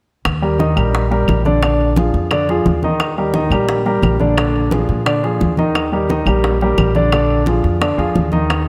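Afro-Cuban jazz at a brisk 174 BPM in 4/4 with a straight feel, this short cut from a longer piece sounds sophisticated and danceable, moving between Ebmaj7 and Bb7 in Eb major. A concert grand piano sits up front as accompaniment, its tone natural with a deep low end, spanning D3 to Eb5. Beneath it, a pizzicato upright bass on gut strings gives a dark, thumpy, woody pulse between Bb1 and Bb2. The percussion comes in almost together: very quiet congas with a thick skin and soft hands enter at 0.2 seconds, joined at 0.3 seconds by round, low-tuned bongos and woody claves in the background, each with a small-room sound. A moderate plate reverb soaks the mix in a dreamy haze, and all parts carry through to about 8.7 seconds.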